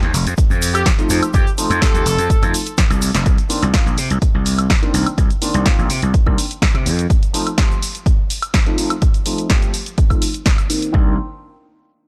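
Opening on a drop, a dark, mellow baby grand piano with sampler grit, phaser and sidechain pumping, a growly, overdriven slap bass and a punchy analog drum machine of snare, hi-hat, cabasa and woodblock set up a nostalgic, sensual filtered disco house groove in C dorian at 125 BPM, soon joined by a very quiet tube shaker with group handclap, an up-front electronic kick, and a clear horn section phrase with light vibrato and delay from 0.7 to 2.5 seconds, before a drum fill leads into a long filter sweep at 3.3 seconds over F7 and Cm9 chords in a mix with little reverb.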